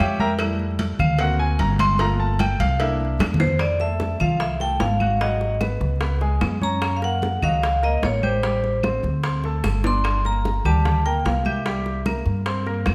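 This Afro-Cuban jazz cut, taken from a longer piece, moves at a brisk 149 BPM in straight 4/4 in F major, with a sophisticated, danceable mood. A polished, present grand piano takes a solo over the opening bars, riding chords that run from Fmaj7 through Gm7 to C9, while the upright bass sits up front with a dark, thumpy, gut-string pizzicato tone. The claves tick woodily in the background, joined by bright, high-tuned congas struck with hard hands and a tight, compressed, saturated pairing of cowbell and bongos. At 3.4 seconds the vibraphone enters with the melody, its metallic, ringing tone played with medium hard mallets and the motor off, as the harmony shifts into colourful moves such as Abm7, Db5 and Gb6. Percussion fills mark the turn into the second section and return at 9.6 seconds, and the whole recording sits in a moderate recital hall reverb laced with vinyl crackle.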